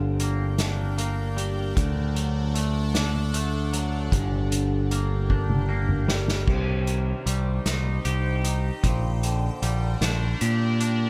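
Post-rock in a slow 6/8, brooding and melancholic, this brief passage cut from a longer piece rests on a growling, overdriven picked bass set up front, while a twangy, clean electric guitar plays fingered arpeggios bathed in lush chorus and tape echo. An evolving wavetable pad holds bright, morphing chords behind them with chorus, phaser and its own reverb, and a soft-mallet drum kit with dark cymbals and a punchy kick sounds distant and roomy. The drums play a fill from 5.3 to 6.5 seconds, leading into a new section as the harmony shifts from G minor and D toward C minor.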